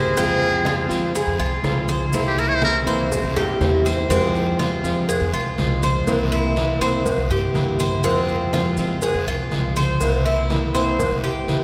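Warm and nostalgic, this excerpt of Cuban son and guajira moves at 122 BPM in a straight 4/4, in F harmonic minor, with a vast cathedral reverb washing over the ensemble. A buzzy, thin trumpet with a metal mute opens with a brief jazz-style solo phrase, its soft attack and vibrato heard close up, and it falls silent at 2.8 seconds. Up front, the bright, metallic Cuban tres spins arpeggios on its double strings, while a boxy, picked swing-style acoustic guitar picks out the accompaniment and a woody, thumpy upright bass played pizzicato on gut strings anchors the low end. From 0.2 seconds, a background bed of percussion enters: thick-skinned, low-tuned congas struck with hard hands, tight high-tuned bongos and cowbell, a raspy guiro and grainy, mellow maracas. A drum fill from 3.1 seconds leads into a second section, where the harmony keeps rocking between Fm and C7.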